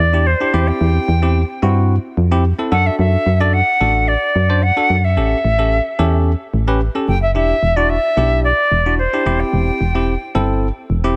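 A straight 4/4 pulse at 110 BPM drives this bittersweet yet confident dance-pop clip, where a punchy, round FM bass anchors an Em7, C/E, D and A7 progression beneath a bright, bell-like tine electric piano, while a pure silver concert flute carries the melody with tongued notes and vibrato in a light small-room reverb.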